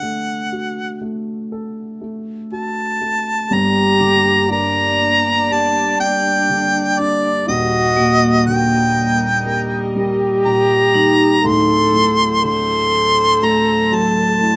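Light reverb gives this short excerpt from a longer acoustic folk-pop ballad an intimate, melancholic air at a slow 60 BPM in straight 4/4. A clear, close-miked harmonica carries the melody up front, its jazz-style phrasing coloured by vibrato and scooped notes, while a dark baby grand piano accompanies with a boxy, mellow tone, long sustain and audible action noise. At 3.5 s the music settles into G harmonic minor as a French horn enters with a classical-style second line shaded by vibrato, and a bowed studio string section adds sustained chords in the background with a gut-string, reedy period tone and a smooth top. From 4.0 s to 11.9 s a vibraphone struck with hard mallets plays metallic, ringing arpeggios with a slow motor vibrato, sitting in the background behind the other parts. The harmony moves from D to G minor, then to E-flat major seventh and D7, leaving the passage poised on that dominant chord.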